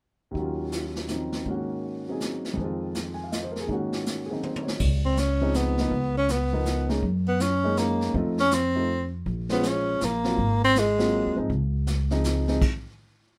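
A close-miked tenor saxophone carries the melody in this relaxed small-group swing and bop jazz waltz, entering at 5.0 seconds with a soft attack, vibrato and a warm, up-front tone. The tune sits in Db major at 161 BPM in 3/4 with a swung eighth-note feel, and this passage is cut from a longer piece. A concert grand piano accompanies from the start with an intimate, natural sound, deep low end and audible action noise, moving through chords such as Ebm9, Ab7sus4, Dbmaj9, Gb69 and Ab13. A vintage kit played with brushes sounds as if captured in a small room, its punchy kick and medium-tuned snare softened by a rolled-off top, and a drum fill leads into the second section. A woody pizzicato upright bass with steel strings joins at 4.8 seconds, and the group comes to a stop at 12.6 seconds under a light reverb.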